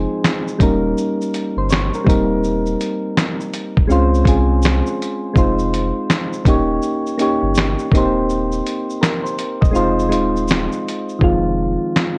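A gritty, compressed sampler-style drum kit sits up front in this melancholic, hazy lo-fi hip hop excerpt, its thumpy kick, fat snare, hi-hat, shaker and finger snaps swung on the 16ths; the kick falls silent from 9.8 to 11.2 seconds, after which the hi-hats drop out for the final stretch. Soft, round electric-piano-like synth keys with chorus carry a melancholy cycle of Fm7, Eb7, Cm7/Eb and Dbmaj7 chords, while a deep, mellow sine sub bass with transformer saturation sits underneath. A small room reverb and worn cassette tape with warbly pitch drift give the recording its dusty haze.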